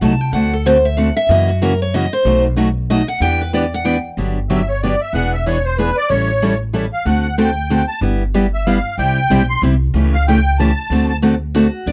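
A fiery, bittersweet gypsy-jazz waltz fragment opens with a picked steel-string guitar melody, touched with slapback echo and finger squeak, over a second picked guitar's accompaniment and a thumpy, woody pizzicato upright bass on gut strings; a reedy, shimmering musette accordion enters at 4.5 s to take the solo, and the lead guitar returns briefly at 11.5 s, all captured in a dry, close 1970s-style studio sound with light reverb.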